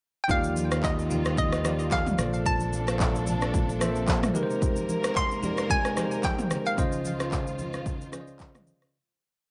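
A bouncy, hollow square-wave pluck sits up front with a short, motif-based melody of call phrases, its bright detuned tone thickened by chorus and digital delay, over a relaxed amapiano groove at 111 BPM in Eb major with a 16th-note swing. A bell-like tine electric piano plays rhythmic chords in a spread voicing with grace notes, while a lush, bowed string section holds sustained chords with vibrato and portamento under sidechain pumping. A round, dark fingered electric bass plays only until 4.3 seconds, while the punchy deep house kit's steady shaker, soft kick and syncopated rim click run alongside distant, very quiet congas, and the whole warm, short piece fades out from 6.8 seconds.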